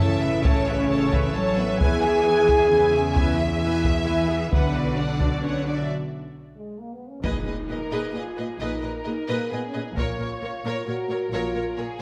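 Cinematic, epic orchestral film score in a dark, dramatic 3/4, where lush, vibrato-rich violins carry the melody over a smooth, distant second violin line, intense violas, focused close cellos and even double basses, with a dark, roomy French horn section holding sustained chords, heavy-stick taiko drums entering at 0.4 seconds, and a break with a drum fill leading to a huge impact in the background at 7.2 seconds, all set in a moderate concert hall reverb as a short cut from a longer piece.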